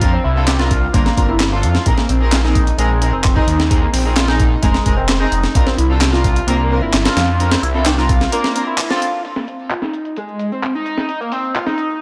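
A straight 4/4 breakbeat drives this gritty, swaggering excerpt at 130 BPM, built on a compressed, sampler-style kit with a thumpy kick and a high-tuned snare sitting up front, each drum softened by a low-pass filter in a small room. From 0.5 seconds, layered, tape-warm electronic handclaps and shaker sit in the background. Underneath, a thick, swirling bass of detuned saw voices in unison, saturated and phased, holds down the low end. An overdriven synth lead plays a screaming, guitar-like riff, bright with vibrato, ring modulation, chorus, 12-bit sampler grit and tape echo. A rich, focused studio string section punctuates it with bowed stabs over harmony moving between C9sus4 and Bb9sus4. A break at 8.3 seconds, marked by a band accent, opens a new section at 9.2 seconds; by then the bass and strings have fallen away, and the lead and percussion carry on under a light reverb.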